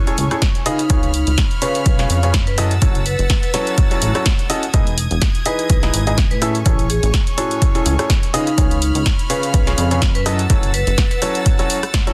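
A clear, woody upright piano riff and biting chamber violin chords, both pumping to the sidechain, open this euphoric, feel-good piano house excerpt with swung sixteenths; they are soon joined by a punchy, tape-warm drum machine playing hi-hat, rim click and snare, a plucky, funky analog bass that also pumps, an up-front electronic kick, and a dark, ringing vibraphone melody with slow motor vibrato and digital delay, over chords of Amaj7, C#7, F#m7 and Emaj7, set in studio reverb under a dense, heavily limited modern master.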